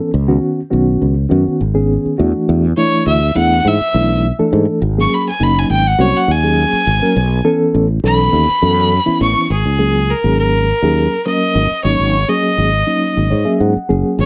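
Over a straight, even 4/4 groove, this funky, slick jazz fusion cut opens on a mellow, reedy electric piano with fast tremolo, sounding through its own built-in speakers, while a fretless electric bass sits up front with a direct, warm tone beneath drifting suspended ninth chords. At 2.8 seconds a single clear violin takes the bowed lead, airy and slightly nasal with light vibrato, intense and close in a boxy way. The harmony shifts at 9.5 seconds, and the electric piano adds a short fill at 13.0 seconds, all within a moderate club-like reverb.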